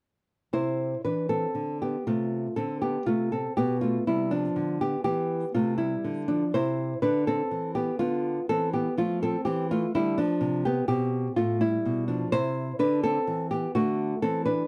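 Flowing in a rubato 12/8 at 82 beats per minute, counted in dotted quarters, this baroque-style classical dance in C major has a radiant, dance-like lilt. A solo nylon-string guitar carries it from 0.5 to 14.7 seconds, ranging from A2 to C5 with a dark, small, thumb-plucked tone placed up front in a light reverb. Its harmony moves from C through F/C, G7/B and a Dm13, then settles on Am/C before closing this excerpt on a D chord at 13.8 seconds.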